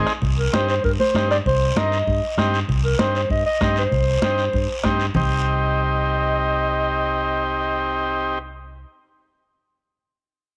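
This fiery, passionate cumbia snippet opens at once on a dark clarinet melody over a vintage, buzzy combo organ and a round, punchy fingered electric bass, all moving briskly at 195 BPM in 4/4 in C minor on a Cm chord. The clarinet takes the solo in a jazz style, with vibrato, scooped notes and a smooth top, while the clean organ, with its light vibrato, sits up front beside the amped bass. Almost immediately, a soft-beater bombo, raspy guiro and bright, high-tuned, damped congas join in, with the close, dry bombo and congas tucked into the background and the guiro carrying a live room sound. The percussion drops out at 5.2 seconds as the tune moves into a new section, leaving clarinet, organ and bass. The clarinet and organ stop at 8.4 seconds, and the bass rings on alone until 8.8 seconds, all within light reverb and small room ambience.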